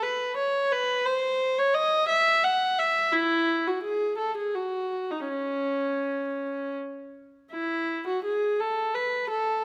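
Serene and dance-like, this short excerpt from a baroque-style suite movement for unaccompanied viola moves in a flexible, rubato 3/4 at roughly 78-88 BPM in C# minor. A single bowed viola plays alone throughout, its gut-string tone reedy with a smooth top and light vibrato in period style, ranging from C#4 to F#5. Close, detailed microphones keep the player up front while a moderate recital hall reverb of 1.6 seconds lends the sound a gentle bloom.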